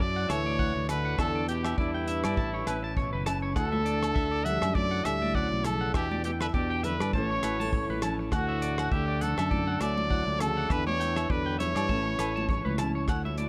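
A bright, vibrato-rich trumpet melody with tape echo sits up front over a breathy, dark trombone second line to open this carefree, danceable highlife groove at 101 BPM in D major, joined from the start by a fingerpicked steel-string acoustic guitar, twangy, slightly broken-up electric guitar arpeggios with tape echo, a round fingered electric bass and a damped 70s drum kit with a tight kick, hi-hat and rim click, while ringing agogo bells enter at 0.3 seconds and distant, high-tuned congas at 3.7 seconds, the band cycling through Dadd9, Em7 and Aadd9 with a swung 16th-note feel in a nearly reverb-free sound.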